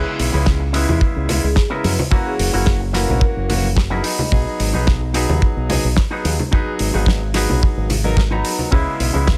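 Nu-disco at 109 BPM with a groovy, sleek feel, built on an up-front fingered electric bass with an envelope filter and a tight, dry kick, as a damped 70s kit adds a fat snare and hi-hat, congas ring in the background, a brilliant grand piano with audible action noise carries 12-bit sampler grit, sidechain pumping and tape echo over C#m7, F#7 and G#m7, a clean, twangy enveloped guitar riff shimmers with subtle chorus, and a dark vibraphone melody with dub echo drifts through between 1.4 and 4.6 seconds.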